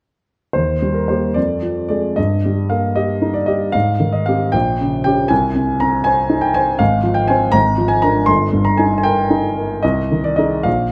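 A romantic classical character piece in Eb major and 6/8, this hopeful, lyrical excerpt features a solo grand piano, warm, smooth and vintage in tone and placed up front by close, detailed microphones. It plays from 0.5 to 10.9 seconds at a flexible, rubato 70-83 BPM in dotted quarters, spans G1 to C6, and drifts through chords such as Abmaj7, Fm/Ab and Bb7/Ab within the moderate bloom of a recital hall.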